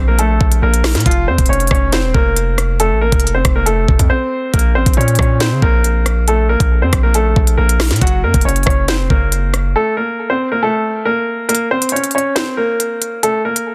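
A dense, heavily limited modern master with digital ambience frames this cold, menacing drill excerpt at 138 BPM, in a half-time 4/4 feel in Bb harmonic minor tuned to A4 = 437 Hz. A bright, woody upright piano with audible action noise and short sustain carries the melody through a low-pass filter and digital delay. Beneath it sit a punchy, heavy sine 808 bass with a noise layer, which stops at 9.8 seconds, and an up-front electronic drill kit of knocking kick, sharp snare, rim click and crisp hi-hats, with breaks at 4.1 and 9.8 seconds and the kick muted once Bb minor returns at 11.5 seconds after passing through F and Gb.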